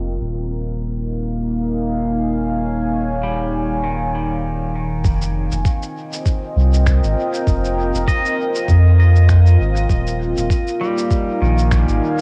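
This meditative, spacious ambient dub excerpt in F minor opens with a dark, moody pad holding sustained Eb9sus4 and Fm9 chords through chorus, reverb and cassette tape, while a round, soft sub bass sits up front and a filter sweep runs over the home-cassette sound through the first five seconds at 99 BPM. At 3.2 seconds a bright, clean electric pedal steel guitar enters with fingerpicked slide arpeggios and volume swells, carried by tape echo. At 5.0 seconds a muffled, thumpy, pitched-down kick and sampler-style shaker and finger snaps join together in small-room ambience, the shaker and snaps also trailing dub echo, all with a lightly swung sixteenth-note feel.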